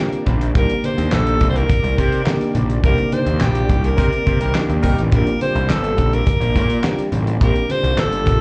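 An intimate, breathy alto saxophone sings a whispered melody over a round, chorused FM electric piano and a softly detuned analog pad, joined at once by a dry, dark 70s drum kit with handclaps and grainy sampler grit, then a punchy fuzz bass and faint congas from 0.3 seconds, in this slick, funky early-eighties boogie funk excerpt at 105 BPM in C dorian, where a tight horn section adds a brief second line between 4.0 and 5.0 seconds during a band accent, all heard through a small room, a venue PA and cassette tape amid club ambience.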